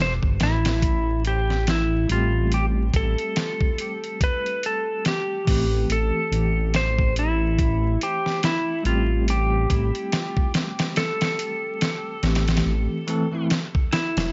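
Melancholic and dark, this trip hop fragment, cut from a longer piece, moves at a slow 71 BPM in 4/4 with a swung sixteenth-note feel, sitting on a single Am7 chord in A minor. A clean lap steel guitar carries the melody up front between E4 and C5, its slide tone and volume swells trailed by tape echo. Beneath it, a detuned saw bass rumbles deep and saturated in the low register, its beating sawtooth edge giving the bottom a heavy, sustained weight. A dusty, sampler-style soul drum kit enters at 0.2 seconds with a thumpy kick, fat snare and filtered hats, gritty and compressed in a studio reverb. From 2.1 to 13.5 seconds a bell-like tine electric piano adds quieter, bright accompaniment, shimmering with tremolo and tape echo, while vinyl crackle and a light room reverb lend the whole fragment a muted, lo-fi haze.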